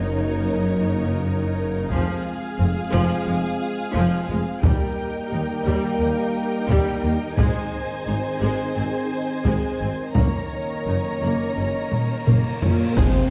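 A steady, straight four-beat pulse drives this relentless, dramatic cinematic orchestral cue, carried from 1.9 seconds by an up-front taiko ensemble struck with hard sticks and given a vintage, band-limited edge. Above it, a dark, woody violin section bowed with vibrato sings the melody while a second, focused violin line and rich, intense violas fill in the harmony. Mellow French horns and a close, soft-attack string section hold sustained chords in the background, resting on bowed cellos, double basses and a very quiet tuba. The passage is one long build-up over shifting minor and major chords, with a dark cymbal swell, clash cymbals and concert bass drum joining at 10.2 seconds, then a drum fill and a huge, shadowy cymbal swell and impact effect near the close. At 13.0 seconds a brief, bright trombone accent lands with barely audible timpani, all set in a moderate scoring-stage reverb that gives the lush strings a dusky, enveloping glow.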